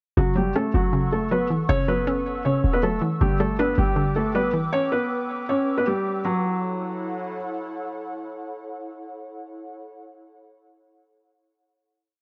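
At 0.2 seconds a felt-muted upright piano enters with a soft, intimate looping melody doubled in octaves, together with a hollow, bouncy square-wave pluck arpeggiating in eighths, an airy, breathy pad holding sustained chords, and a punchy, tight 808-style bass with long sub-bass notes. This brooding, eerie trap piece at 158 BPM in a half-time feel moves from F#m7 to G6 in F# phrygian, tuned to A4 = 435 Hz, with the bass dropping out at 4.7 seconds and the pluck at 5.5 seconds. From 6.2 seconds a final F#m7 chord rings on, the pad sustaining alone after the piano stops at 7.3 seconds, all set in light digital ambience.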